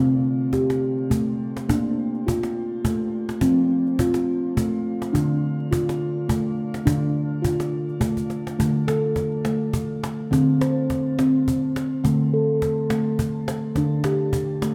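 A steel tongue drum played with rubber mallets rings out round and pure in arpeggios up front, haloed by shimmer reverb, in this meditative, hypnotic world piece at 104 BPM in a gently swung 3/4, set in D minor pentatonic. A snappy cajon with snares joins at 0.2 seconds, sitting lower in the mix, and a drum fill at 8.2 seconds leads into a new section at 8.6 seconds, where the harmony moves from Bb, F and Dm toward open D5 and Csus2/D chords. The whole cut, taken from a longer piece, sits in a wet scoring-stage reverb.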